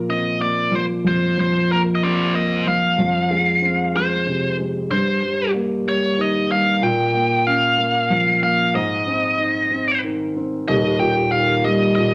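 A felt-muted upright piano opens this tender, heartfelt pop excerpt in a slow 6/8 at 62 BPM, its soft, dark, intimate tone underpinning a biting, overdriven lead guitar that carries the bright, picked melody up front through a chord progression moving from Bbsus2 through Fm, Bbm and Ab to settle on Eb at 10.7 seconds, all within a large studio reverb.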